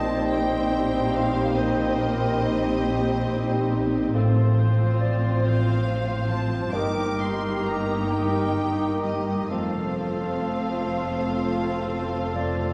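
Classical orchestral music in a slow, romantic vein, this lyrical passage moves at around 42-47 beats per minute in a rubato 12/8, cut from a longer piece. The violin section carries the melody with smooth, lush vibrato, while a mellow cor anglais, a solo clarinet and a second, softer-edged violin line weave inner voices beneath it. A rich viola section and a clear bassoon with light vibrato fill out the accompaniment, and a very quiet, bright, thumb-plucked harp rings out arpeggios across a broad range. Cellos and double basses anchor the bass in the background, the basses adding expressive portamento. The harmony drifts from Cm7/Bb through F/A and Eb/G to F, and the whole ensemble is heard from further back in a wet scoring-stage reverb with a 1.9-second decay.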